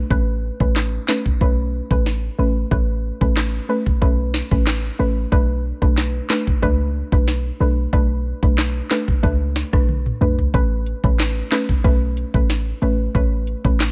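A punchy, tight 808-style bass opens this hypnotic, bouncy dancehall excerpt at 92 BPM, joined at 0.1 s by a dark, round pluck with chorus and a ring-modulated edge, and by an electronic afro-pop kit with a knocking kick, sharp snare, metallic hats, handclaps, rim clicks and toms. The harmony moves from Aadd9 to Bm7 at 5.3 s, and a drum fill at 9.9 s leads into a new section where the Aadd9 returns. The sound is dry and up front, with a tape-tinged sheen on the drums, in a short clip cut from a longer piece.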